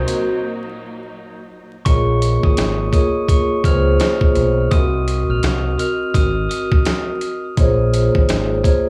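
Tough yet reflective, this short excerpt of boom-bap hip-hop moves at 84 BPM in Bb minor with a 16th-note swing. A distant, softly bowed chamber string section opens with warm sustained chords, heard only until 1.8 seconds, while from 0.1 seconds a mellow, airy vibraphone with slow motor vibrato carries the harmony up front, and a break runs from 0.4 to 1.9 seconds. A dusty, sampler-style drum kit sits forward in the mix with a thumpy kick, fat snare and hi-hat, compressed and gritty, with the sound of a large room around it. Beneath it, a deep, round fingered electric bass anchors the low end with a dark, direct tone. From 1.9 seconds a glockenspiel struck with soft plastic mallets takes the melody high above, its bell-like ring trailing tape echo until 7.5 seconds. The whole track has a dry hardware character with vinyl crackle, as chords move between Cm7b5 and Bbm11.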